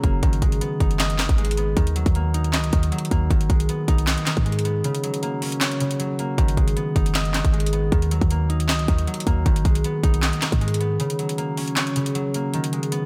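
Hard-hitting, eerie trap at 156 BPM in a half-time feel and G# minor, this excerpt pairs a low-pass filtered, fingerpicked concert harp with a ringing tone up front, a deep, boomy, sine-like 808 bass that stops at 11.0 seconds, and an electronic kit of hard-clipped kick, sharp snare, metallic hi-hats and handclaps, all set in a dry room, with a break at 4.8 seconds and the kick muted from 12.5 seconds as the chords cycle through G#m, D#m and F#.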